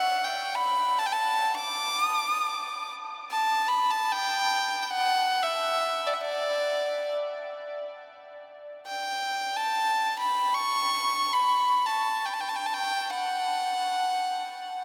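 A clear, nasal violin plays alone and up front in free time from 0.0 to 14.8 seconds, a stately, warm passage of Arabic maqam music in D maqam ajam cut from a longer piece, its earthy, airy bowing and light vibrato spanning D5 to D6 through an analog delay, the opening phrase returning at 8.6 seconds, all soaked in a huge, dreamy reverb.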